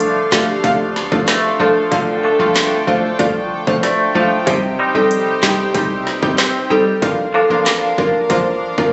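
Dancehall at 94 BPM in D phrygian, bouncy and sultry, with an up-front island pop kit of tight kick, woody snare, smooth hats, handclaps and rim click alongside a round, warbling analog pluck with chorus, a twangy electric guitar picking arpeggios through tremolo and tape echo, soft floating strings pumping in the background, a deep boomy 808-style bass and a marimba melody entering at 0.3 seconds over Dm, Cm and Bb, all captured on a phone in the room with light reverb and a dull top end.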